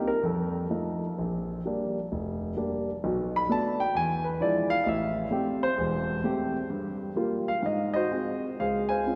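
Swinging and playful, this short solo jazz excerpt features a lone concert grand piano moving at 129 BPM in 4/4, its swung eighths loosened by a rubato feel. The piano's tone is dark and mellow, with a deep bass reaching down to E1 and a range extending up to B5, and it sits up front in the sound. The harmony travels through rich jazz chords, from F7 and Bb6 through Bm7 and E7b9 to Am7, Gm7 and Ab7 before landing on Dbmaj7 at 8.6 seconds. The instrument is tuned slightly low, at A4 = 436 Hz. A wet cathedral reverb with a long 4.1-second tail surrounds the performance, giving it the resonant air of a church or concert hall, and the passage is cut from a longer piece, ending at 9.2 seconds.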